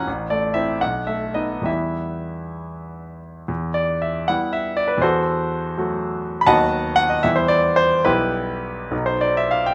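A clear concert grand piano, polished and up front with a deep bass and short sustain, carries this brooding, stormy romantic character piece alone, moving in 6/8 with free rubato. Cut from a longer work, the fragment states its opening idea and then restates it from 3.5 s, the harmony darkening through a half-diminished chord over an E in the bass before settling on the home minor chord and pausing on the dominant. A moderate large-studio reverb gives the piano a sense of space.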